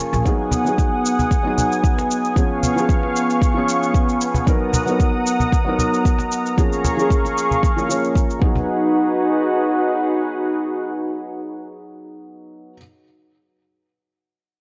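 A lightly swung 114 BPM groove in 4/4 drives this mystical, earthy organic downtempo excerpt, built from a deep, up-front electronic kick, a layered electronic shaker and a woody cajon played with soft hands, all of which drop out by about 8.7 seconds. Over a G# dorian progression of G#m7, C#7, Bmaj7 and A#m7, a detuned, warbling analog pad with lush chorus and sidechain pumping holds sustained chords beside a felt-muted upright piano, dark and intimate with audible action noise, tape echo and a low-pass filter, the two carrying on alone to the end. The sound is dry and gritty, with light small-room reverb and a dulled top end.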